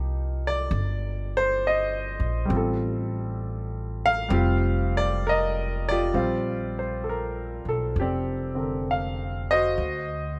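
Jazz ballad at 66 BPM in 4/4 with a gentle swing, intimate and tender, where a clear, natural grand piano comps up front through rich chords such as Cm9 and Fadd9/A before settling into Bb major at 6.1 seconds on a Bb69, while a woody, thumpy pizzicato upright bass with steel strings sits close and dark beneath it in light reverb, the excerpt closing on a D7b9.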